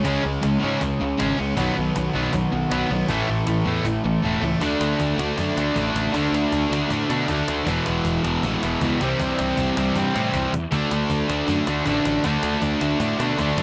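Upbeat and energetic, this punk rock excerpt drives at 158 BPM in straight 4/4, opening in half time for its first 4.6 seconds over chords like C#5, B and A5 before moving into a second section that cycles through D, E and C. Three overdriven electric guitars play riffs throughout: a crunchy, bright one sits up front, a double-tracked cranked stack guitar adds a second bright layer in the background, and a sludgy, warm guitar reaches up to F#4. Underneath, a fuzz picked electric bass enters at 0.1 seconds with a round, amped tone in the low register. The drums come from a snappy cajon with snares, played with hard hands and recorded close and dry. Its kick and snare drop out briefly from 4.2 to 4.6 seconds, and a short drum fill arrives at 10.3 seconds, all set in light reverb.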